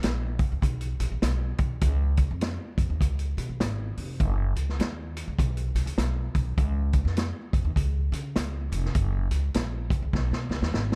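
An upright bass and a vintage drum kit start together, setting up an uptempo 1960s-style soul groove at 101 BPM in 4/4, with a lilting swing on the eighth notes and a home in Db mixolydian. The pizzicato bass on gut strings sounds woody and thumpy, ranging from F1 up to Db3 and sitting up front in the mix. The acoustic kit of hi-hat, kick and snare has a mid-forward, studio-room character, with a punchy kick, a medium-tuned snare and a rolled-off top end. The production is dark and warm with little reverb, giving this danceable, cozy groove a close, intimate feel. Cut from a longer piece, the passage closes with a drum fill from 10.1 to 11.0 seconds.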